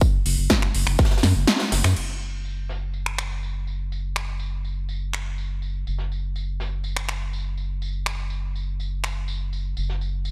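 Expansive and uplifting, this progressive house excerpt moves in a straight 4/4 feel. A punchy electronic kick sits up front at the very start, then stops after about 1.1 seconds. A deep house kit joins at 0.3 seconds with a punchy snare, metallic hats, finger snaps and a crash, all overdriven and layered. A round analog bass enters at the same moment, dark and sustained with a fast attack and a wave-folded edge, pumping against the sidechain in its low register. Underneath, a jazz brush kit of hi-hat, medium-tuned snare and tambourine adds a quieter acoustic studio-room texture, filtered at both ends. The band hits an accent at 1.5 seconds before the music opens into a new section at 2.0 seconds, carried by light reverb and studio ambience.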